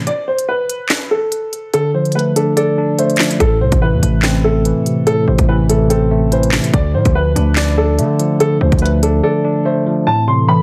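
Set in a digital ambience, this menacing drill excerpt moves at 144 BPM with a half-time feel, shifting between Dm and Am. A clean, bright tine electric piano accompanies through its built-in speakers while a boxy, worn baby grand piano carries the melody, its action noise audible, and both sit up front under low-pass filters alongside a hard-clipped electronic kit with a sharp snare, crisp hats and handclaps re-recorded in a large room. A saturated, heavy 808-style bass arrives at 3.4 seconds with fast-attack, decaying notes, the drums stop at 9.1 seconds, and a deep, detuned analog pad with chorus and phaser slowly enters at 10.2 seconds.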